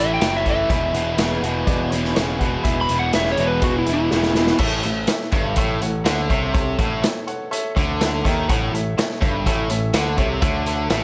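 A straight, driving 4/4 groove at 124 BPM anchors this confident classic rock passage in A major, cut from a longer piece. For its first 4.6 seconds an electric slide guitar carries a solo, slightly broken-up and played with fingerpicks, with a slapback echo giving it bounce, while a boxy, very quiet ladder-braced acoustic guitar with old strings is picked underneath over a move from A to E. The vintage drum kit enters at 0.2 seconds, punchy in the kick, dark in the cymbals and up front with a pumping room sound, and it throws in a fill just before the music returns to A at 4.6 seconds, where the slide guitar and acoustic drop out. Throughout, a bright, distorted guitar and an overdriven hollow-body guitar set further back share a low riff, alongside an overdriven picked bass heard direct and amped. A brilliant upright piano with audible action noise and a woody, intimate character fills in the accompaniment, and the whole sits in a small room with light reverb.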